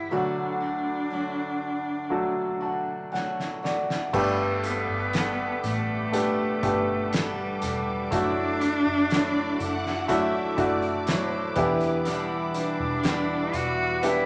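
Pop ballad at a slow 60 BPM in G major, tender and hopeful, with an up-front, clear bowed cello singing the melody over a soft, felt-muted upright piano and a bright picked steel-string acoustic guitar's arpeggios with audible finger squeak. A loose indie drum kit with a fat snare, punchy kick and dark cymbals arrives with a fill at 3.1 seconds, and at 4.1 seconds a round, foam-muted electric bass joins, along with a smooth sul tasto string section in the background. From 9.1 seconds a distant violin section adds an expressive second line with portamento, all bathed in a large, wet studio reverb in this excerpt from a longer piece.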